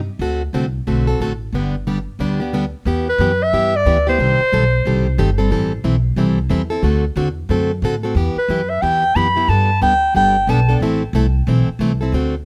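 Acoustic string swing in the jazz manouche style, swinging and playful, this short cut opens with a woody, thumpy upright bass on gut strings plucked up front and a bright, picked parlour steel-string guitar whose fresh strings let a little finger squeak through. A clear clarinet takes the melody in two solo phrases, entering at 3.1 and again at 8.4 seconds, its light vibrato and scooped notes trailed by a touch of tape echo. The close, detailed sound sits in a light reverb, with chords moving through minor-sixth and dominant-seventh colours.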